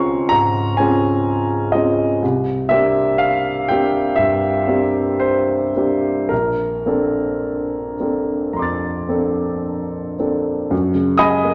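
A warm grand piano sits up front, present and richly sustained, carrying this hazy, dreamy excerpt of impressionist classical solo piano in Bb major alone from 0.0 to 11.5 seconds across a range from Bb1 to A6. The rubato pulse drifts around 53-65 BPM in 4/4 as lush extended harmonies move from Dbmaj7 through C9 and Bbmaj9 to a closing F#sus2 at 10.7 seconds. A wet recital hall reverb with a 1.5-second decay surrounds the instrument.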